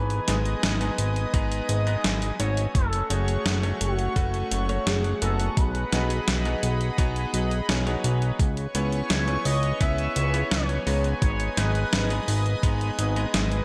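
From the first moment, a smooth, vibrato-laden sawtooth synth lead with lush chorus and tape echo sings over a shimmering, sidechain-pumped pulse-width pad, background stabs from a brilliant, worn concert grand piano, and a fat, saturated analog bass up front, while a clean 12-bit drum machine's hi-hat and medium-tuned snare arrive in gated reverb and a thumpy, tape-warm electronic kick joins at 1.3 s, giving this cinematic, driving 85 BPM synthwave excerpt its push through a G#m, F#m, B6, C#m7 progression in a moderate concert hall ambience until the lead drops out at 12.3 s.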